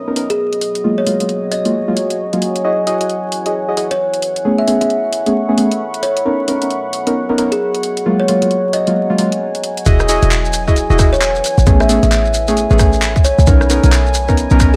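A swung two-step shuffle drives this bouncy, soulful UK garage excerpt, with bright hats, handclaps and rim clicks from a layered, produced garage kit set in a small room. Over it, deep, mellow chord stabs with a lush chorus sit up front and carry a filter sweep through the opening section, moving through ninth chords, while a woody, ringing kalimba picks out a plucked melody. Beneath them, a smooth, warbling vintage pad hangs in the background, and a moody, detuned ambient pad with a sub octave and long release adds shadowy depth; both pump against the sidechain. At 9.9 seconds the drop arrives, bringing in a tight electronic kick, a punchy, short 808-style bass with tube saturation, and a grainy, close and dry shekere. Light reverb and a steady layer of vinyl crackle give the mix a dusty, intimate glow.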